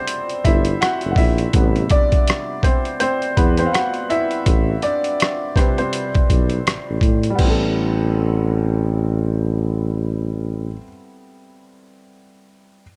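This R&B and neo-soul excerpt moves at an unhurried 82 BPM in 4/4 with a lazy 16th-note swing, setting a smooth, late-night mood around an Am9 chord. An intimate upright piano carries the accompaniment across the whole clip, its woody, natural tone coming through with audible action noise, and it takes a solo through the first 7.4 seconds. A sampler-style boom bap kit of kick, hi-hat, rim click and crash sits up front, compressed and pitched down, gritty and tape-warm, with a thumpy kick, before it drops out at 7.6 seconds. A mellow tuba handles the bass with vibrato, a punchy attack and a smooth top, staying prominent in the mix until 10.8 seconds. Studio reverb and a dark, warm production wrap the piece as it shifts into a new section at 7.4 seconds.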